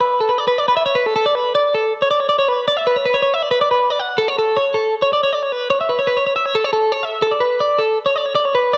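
A straight 4/4 rock pulse at 158 BPM drives this playful, wistful fragment from a longer piece, where a lone twelve-string electric guitar, clean, picked, compressed and sitting up front with cassette-tape character, rings through a moderate spring reverb, moving into a new section at 1.1 seconds in a home cassette recording whose top end stops at 7.9 kHz.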